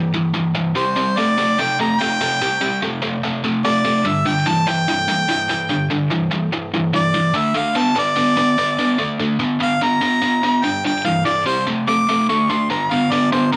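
Rock with a driving, swaggering feel at 146 BPM in G mixolydian, cut from a longer piece, where a tight, double-tracked electric guitar opens alone with a bright, distorted, picked riff built on G5, C5 and D5 power chords. At 0.8 s a clear harmonica enters up front with the solo melody, its close-miked tone carrying light vibrato and scooped notes, roughened by overdrive and trailed by a slapback echo. Both parts sit forward in a light reverb and studio ambience.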